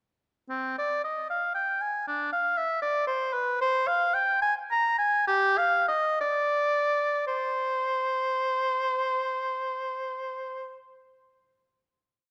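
A dark production places a lone oboe up front in a moderate scoring-stage reverb, its tone warm and touched with light vibrato. This brief, introspective baroque-style fantasia in flowing 6/8 is played with rubato, the oboe carrying the melody while leaping down to bass notes. The line slows from 2.8 seconds, settles onto a final note at 7.3 seconds, and the oboe falls silent at 10.7 seconds as the room's reverb lingers.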